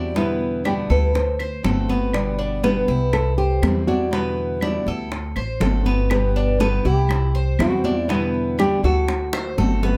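A straight, relaxed 4/4 Cuban son and guajira groove is carried by low-tuned, round bongos struck with hard hands, bright high-tuned congas and woody claves set back in the mix, and a dark, thumpy pizzicato upright bass up front, while a thumb-plucked classical nylon-string guitar sings the melody over a dark fingerpicked steel-string guitar and the metallic double-strung arpeggios of a Cuban tres, all circling an Em7–D7–G–C progression in a lightly reverberant, closely detailed sound before a drum fill at 9.3 seconds closes this cut from a longer piece.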